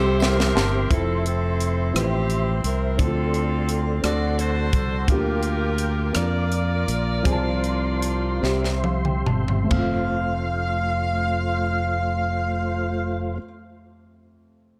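A bright, tight saxophone section carries the vibrato-laden melody up front in this uplifting, soulful slow gospel excerpt in 6/8 and F major at 44-58 BPM, over a growly fingered electric bass, a woody upright piano in the background whose action noise is audible, a flute-like tonewheel organ turning on a slow rotary speaker, a crisp fusion kit with a punchy kick and high-tuned snare that plays from 0.2 to 9.9 seconds, and a faint jingle of distant tambourine at the start, as the tempo slows from 5.1 seconds toward a drum and piano fill that resolves on F at 9.7 seconds.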